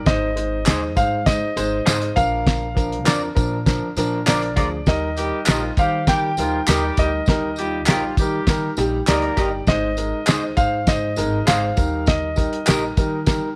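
Uptempo 1960s-style soul in a joyful, uplifting mood, with a dark, mellow grand piano carrying the melody over a second, boxy grand piano with long sustain playing the accompaniment, and a woody, thumpy pizzicato upright bass underneath. A dry, cloth-damped drum kit with a fat snare and tight kick sits up front beside tambourine and handclaps with a live-room feel. A slightly broken-up, lo-fi electric guitar adds picked stabs from 0.7 seconds, and a clear, vintage horn section with light vibrato plays a second line from 5.2 to 9.5 seconds, all in a close, nearly reverb-free sound.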